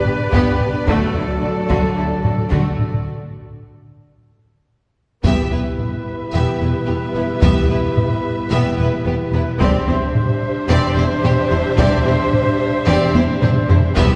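A heavy-sticked taiko ensemble drives this heroic, relentless epic orchestral film score cue in E minor at 110 BPM, with drum fills at 4.4 and 13.2 seconds, while a smooth, lightly vibrato violin section carries the melody over a second violin line, a dark, expressive string section holding sustained chords, and a rich viola section in accompaniment. Mellow French horns sustain chords beneath dark, distant trumpet stabs, and a rich, very quiet cello section joins a woody double bass section on the bass. The whole ensemble sits further back in a wet scoring-stage reverb, with a break from 3.1 to 5.2 seconds before the music settles onto E minor.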